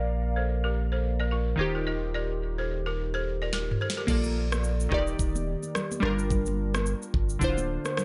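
Breezy and joyful, this afrobeats excerpt moves at 108 BPM in Bb major with a swung sixteenth feel. It opens on glassy digital keys with chorus and a filter sweep and a deep, punchy sine sub bass with a pitch-drop attack, joined at 0.4 seconds by a woody, buzzing balafon riff struck with hard rubber mallets and treated with tape echo. A drum fill at 3.5 seconds brings in the electronic afro-pop kit, with its knocking kick and sharp snare recorded in a large room, and at 4.1 seconds bright, high-tuned congas join quietly in the background as the chords move through Bbmaj7, Ebmaj7, Gm7 and Dm7. The mix is dry and close, with the keys, bass and drums up front and the top end kept soft.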